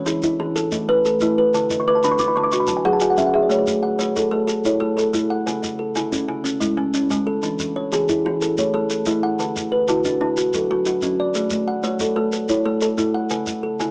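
Southern African traditional music in an mbira-style interlocking cycle at 122 BPM in 12/8, this hypnotic A major excerpt pairs an up-front, bright, ringing kalimba with thumbnail-plucked arpeggios and a fill from 1.6 to 3.5 seconds against a softer, dark, mellow second kalimba of short fingertip-plucked arpeggios, both woody with a hollow-box tone, while a grainy, close shekere joins at 0.1 seconds, all in moderate studio reverb with a small-speaker sound.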